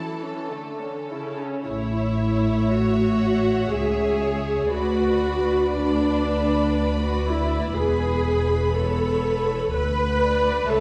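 Up front, a lush, close viola section carries the accompaniment of this serene, slow romantic movement for string orchestra in A major, moving at 60 BPM in a rubato 3/4 with uneven beats. Two violin sections sing with vibrato above it: one carries the smooth-topped melody from the background, while the other traces a focused second line. Cellos and a chamber double bass section enter together at 1.7 s beneath chords moving from A through Bm/D to E, all bathed in a concert hall's reverb within a dark, warm production.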